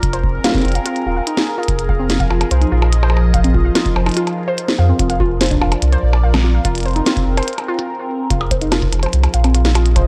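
A straight 4/4 groove of dry, deep electronic kick and an up-front glitchy kit of clicky hats, tiny snare and percussion blips drives this eerie IDM excerpt, where a round sine sub bass sits under a swirling, nasal phased analog pad and a warbling, lo-fi dusty pluck plays arpeggios through a filter sweep until 8.3 seconds, while a bubbling, resonant stepped-filter texture murmurs in the background until 7.9 seconds.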